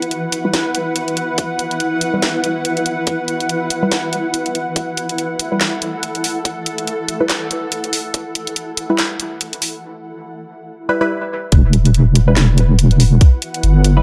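A blurred, evolving granular pad and a garage kit of handclaps, high-passed hi-hats and a cracking snare open this brooding, meditative deep dubstep passage in E minor at 142 BPM, with a half-time, swung feel, joined almost at once by muted, filter-plucked dub chord stabs carrying phaser and dub echo under a filter sweep. A tight, up-front electronic kick arrives at 1.4 seconds as the build-up gathers, set in light reverb and digital ambience. At the drop at 11.5 seconds, a deep, chorused wobble bass enters on an E minor chord, dark and compressed, as this cut from a longer piece closes.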